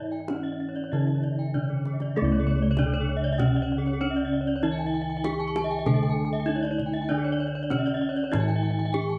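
Bossed bronze gongs sit up front with a round, beating tone, anchoring this brilliant, ceremonial passage of Balinese gamelan cut from a longer piece. Above them, a close-miked bronze metallophone carries the melody with a full, dry ring, its paired tuning producing shimmering beats. A second metallophone holds the lower accompaniment in a mid-forward position, while two more metallophones spin high arpeggios with an airy, glittering sheen. The tight kendang plays in 4/4 and adds a fill from 1.7 to 2.2 seconds that leads into a new section. The ensemble plays live together in a stone room whose moderate reverb lends the horn-mallet strikes a ceremonial resonance.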